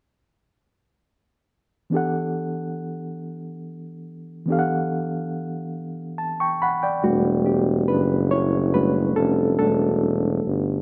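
A reedy, clean electric piano with fast tremolo opens at 1.9 s on an Em11 chord in this yearning, sultry slow six-eight R&B excerpt in E dorian at 47 BPM, adding a fill at 5.8 s before taking a solo at 7.0 s, where a mellow, breathy tuba with vibrato enters up front on the bass line, all set in light reverb and small room ambience.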